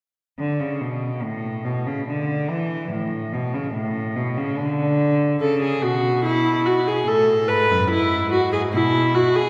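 Stately and joyful, this brief cut from a longer baroque-style fugue in triple metre opens at 0.4 seconds with a bowed solo cello, its rich, nasal tone carrying a light vibrato. At 5.4 seconds a single viola joins with smooth, reedy accompaniment, and both gut-strung, period-style instruments play until 9.5 seconds. They sit up front in a church reverb that lingers with a long, wet tail.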